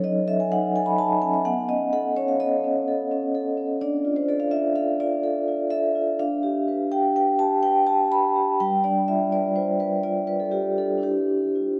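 A solo vibraphone played with soft mallets opens this contemporary classical fragment, its mellow, ringing tone carrying a medium motor vibrato and sitting up front between F#3 and B5. The playing drifts in a rubato 5/4 through chords such as F#m6, B9 and G7/D before settling on Dm9 at 11.0 seconds, creating a hypnotic, reflective mood. A cavernous church reverb and a dark production wrap the metallic shimmer, and the passage, tuned slightly low to A4 = 435 Hz, is cut from a longer piece.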